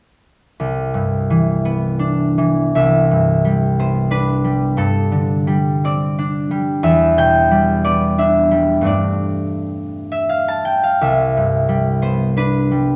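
Peaceful and dreamy, this short classical passage for solo concert harp drifts in 6/8 at a slow, rubato 51-63 BPM in C major, its warm, ringing, fingerpicked tone sitting up front from 0.6 to 13.0 seconds and spanning C2 to A5 through Cmaj9, Gsus24 and Em7 harmonies before returning to Cmaj9, all bathed in the moderate reverb of a recital hall.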